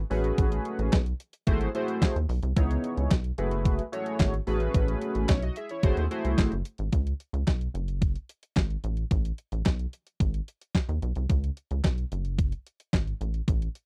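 A crisp, overdriven 8-bit drum machine with a thumpy kick, medium-tuned snare, hi-hat and handclaps drives this slick, late-night early-eighties boogie funk excerpt at 110 BPM in straight 4/4, under a rubbery, hollow square-wave bass and a glossy, chorused polysynth whose warm chords from Amaj13 through C#m9 and F#m11 stop at 6.5 seconds, leaving bass and drums to carry sparser suspended harmony in a dry, close studio sound until the bass drops out at 13.7 seconds.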